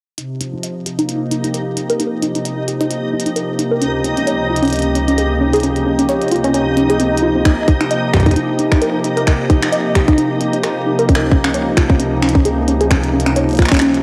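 IDM at 132 BPM in 4/4, with a gentle 16th-note swing, this intricate, wistful passage is cut from a longer piece and moves between Eb and Dbmaj9 chords. A hollow, flute-like pad holds sustained chords up front, its soft attack thickened by chorus and a gritty vintage sampler edge. Over it, a warbling, dusty pluck spins arpeggios with a fast, decaying attack, its wave-folded tone swept by a filter throughout and trailed by tape echo. Glitchy electronic drums with clicky hats and finger snaps sit lower in the mix, and from 1.3 s a reversed, granular texture adds bright, dreamy swells with a long release. A tight electronic kick arrives up front at 7.5 s, while the whole passage carries a lo-fi home-cassette character inside a lush digital hall.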